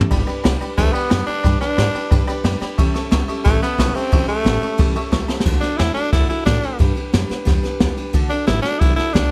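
Set in a lightly reverberant studio room, this rollicking, rowdy rockabilly excerpt moves at 179 BPM in a straight 4/4. Up front, a dark, smooth brush kit with a high-tuned snare and boomy kick sits beside a thumpy, woody upright bass in the background, while a bright, full-bodied picked acoustic guitar and a jangly, metallic tack piano fill in the accompaniment over G and A7 before the piano drops out at 5.4 s. A raspy, gritty tenor saxophone with light vibrato takes the punchy solo lead from 0.8 s, and a drum fill at 5.3 s ushers in a second section settling into D major over D and G chords.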